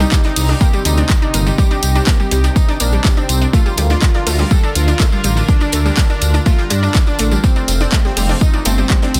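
Cut from a longer melodic techno piece, this dark, dramatic passage opens with a smooth, evolving supersaw melody through digital delay, a sweeping, resonant pad in the background, a round analog pluck playing arpeggios with chorus and dub echo, and a deep, rumbling detuned saw bass up front, all four pumping from the sidechain, beneath a very quiet, dry soul kit of snare and hi-hat and a jingly tambourine, while from 0.1 s a punchy, overdriven electronic kick and a house kit of handclaps and bright, pumping hats join in studio reverb over a Cm, Bb, F progression in a dense, heavily limited master.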